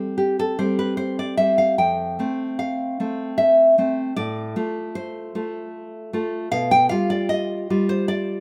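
Wistful and melancholic, this short excerpt from a longer romantic piece for solo classical guitar unfolds in a rubato three-beat feel, with a warm, fingerpicked nylon-string guitar sitting up front in light reverb and a rough home-demo sound, moving from C5 through F and F/A to G7/B before it breaks off at 8.4 seconds.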